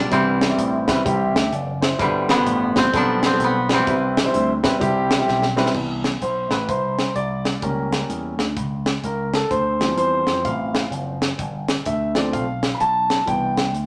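A woody, fingerpicked koto carries the melody of this soulful, jubilant uptempo gospel piece at 128 BPM in C major with a swung feel. It plays over an intimate grand piano with audible action noise, a bright slap bass pushed through an envelope filter, and a crisp, polished fusion kit with a high-tuned snare and punchy kick, all in a reverberant studio room. After a drum fill at 5.3 seconds, the piano takes a solo from 5.7 seconds and the koto stops at 6.3 seconds, leaving the piano's long sustain to ring through richer changes from Cmaj9 through C#dim7 and Dm11 to G9sus4.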